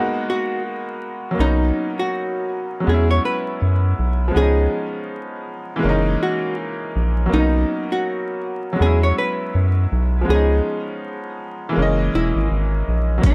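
Melancholic and reflective, this lo-fi hip hop excerpt opens on a woody, bright upright piano with cassette-tape color, joined almost at once by a clean, hollow-body archtop guitar carrying the melody over gently swung jazz chords. A round, deep analog bass enters at 1.4 seconds as the progression cycles through lush ninth and thirteenth chords. The gritty, sampler-style boom bap kit arrives only at 13.2 seconds with a thumpy kick and hi-hat, all under light reverb and vinyl crackle.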